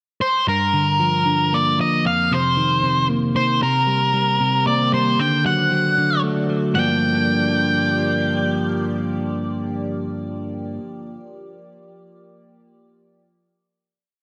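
A dark, fuzz-soaked lead guitar opens this short, cinematic post-rock piece at 0.2 s, stating a hook-based melodic motif in a high register, its distortion trailed by tape echo. Moments later a clean electric guitar enters up front with compressed, picked arpeggios reaching down into its low range, its tone rounded and also carried on tape echo. The two guitars move in a steady triple metre over Gm7, F7sus4, Cm7 and D before settling on a final Gm7 chord. At 4.1 s an evolving wavetable pad rises in beneath them with a slow attack: a bright, morphing unison tone coloured by chorus, phaser and its own reverb, sitting well back in the mix. A lush hall reverb surrounds the performance, lending this brief statement a cathartic, expansive air.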